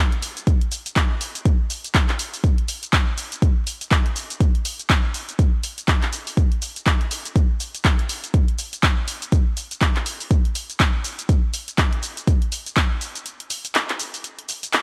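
A deep house drum kit opens this short cut from a longer house track, its handclaps, hi-hat and shaker sitting up front with a layered, produced electronic character. An electronic kick drum joins at 0.5 seconds, adding a deep low end that shares the same close, small-room sound. The groove moves in 4/4 with a swung sixteenth-note feel, giving the sunny, warm mood an easy bounce. Vinyl crackle runs through the recording, and the sound stays dry with little reverb. The kick drops out at 12.9 seconds, leaving the kit alone for a brief break from 13.3 seconds to the end.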